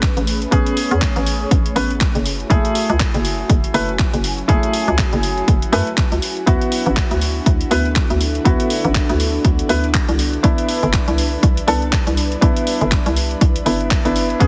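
Warm and relaxed, this 121 BPM deep house passage rides a swung 16th groove built on a punchy, up-front analog kick, overdriven handclaps and hi-hat, and a hollow, bouncy FM bass that pumps against the beat. Soft felt-muted upright piano stabs, with audible action noise and tape echo, enter at 0.5 seconds over F#m9, D69 and Cmaj9 chords. Behind them sit an airy, breathy chorused pad and a deep, moody ambient pad, both pumping in the background of a heavily compressed, radio-like mix with light reverb.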